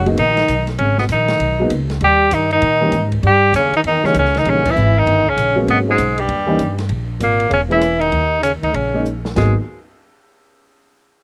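A late-night, swinging small-group jazz excerpt in G# minor at 196 BPM, with a bright, punchy tenor saxophone carrying the melody up front over a breathy trombone second line touched with slapback echo. A warm grand piano with audible action noise and the same slapback echo comps alongside a woody, thumpy pizzicato upright bass, while an open drum kit with dark cymbals and a boomy kick sits low in the mix. The band hits an accent at 4.6 seconds and the drums play a fill from 9.0 to 9.4 seconds, all in a dry sound.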